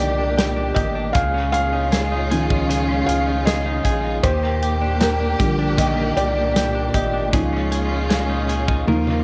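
A felt-muted upright piano, mellow and intimate with audible action noise, carries the lead through this tender, heartfelt pop ballad excerpt, moving between Ebmaj7 and Dbadd9 chords. Beneath it a distant, lush string section holds bowed chords with vibrato and portamento, a clean, direct-recorded electric guitar picks compressed arpeggios through a phaser, and a round, deep analog bass anchors the low end. An up-front acoustic drum kit with a tight kick and medium-tuned snare keeps a straight feel and closes with a brief fill at 8.9 seconds, the whole mix sitting in light reverb.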